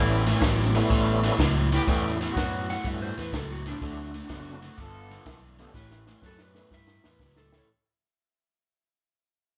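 A swung shuffle at 124 BPM in 4/4 sets a laid-back, soulful electric blues groove in this short clip, which fades out across its full 7.7 seconds. An overdriven semi-hollow guitar sits up front with a hollow-bodied, picked riff in its low register, while fingered electric bass adds a round, dark bottom and a compact cocktail kit enters at 0.3 seconds with punchy kick, high-tuned snare and dusky ride cymbal. Above them, an electric guitar through a small old amp picks a slightly broken-up, lo-fi melody, and a bright, close-miked horn section punches jazz-style stabs. A full tonewheel organ, lightly overdriven with chorus vibrato and a slow rotary speaker, fills in the accompaniment before dropping out at 6.7 seconds. The chords move from A9 to D9 and G9 before returning to A9 at 5.8 seconds, where the drums launch into a fill, all captured as a band playing live in one room with moderate studio reverb.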